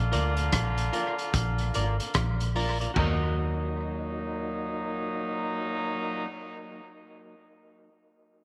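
A foam-muted, round electric bass sits up front in this serious, laid-back roots reggae fragment, holding the low end with a dark, amped tone over a relaxed swung feel. A vintage drum kit with a tight kick, rim click, hi-hat, toms and china cymbal sounds muffled and gritty, carrying tape echo before it drops out at about 3.2 seconds. A clear, tight horn section plays a second line touched with dub echo, while a mellow tonewheel organ fills in alongside with chorus vibrato, a slow rotary speaker and tape echo. A clean, fingered electric guitar adds higher accompaniment with dub echo of its own, lasting until 6.5 seconds. The harmony moves from Bb to Ebm at 3.0 seconds, and light reverb with small-room ambience lends the cut a modest sense of space.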